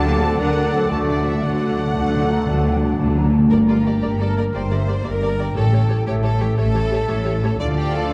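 A steady 12/8 pulse at 117 BPM in dotted quarters carries this determined, adventurous cinematic passage in G dorian, cut from a longer piece, its chords moving from D through Gm and A7 to Dm. Dark, lush violins sing the melody over a clear second violin line, an airy flute ensemble in the background, and a solo oboe on D5 until 3.3 seconds, while very quiet violas, mellow horn chords and a ringing harp's arpeggios fill the middle. Mellow trumpet stabs sit in the background, rich cellos and up-front double basses anchor the low end, and timpani with medium mallets fill the first 3.5 seconds and return at 7.6 seconds, all set in a wet concert hall reverb with a dark production.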